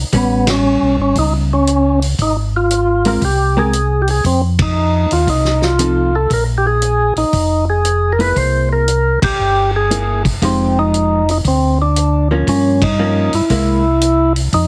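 A percussive tonewheel organ carries the melody up front, its key click and second-harmonic percussion turning slowly through a rotary speaker, over a round, dark organ bass line, clean picked hollow-body jazz guitar and a dry soul drum kit with a fat snare and punchy kick in this late-night, bluesy soul jazz organ trio excerpt swinging at 117 BPM, with band accents at 0.4, 4.5, 9.1 and 12.7 seconds and a heavily compressed radio sound in light reverb.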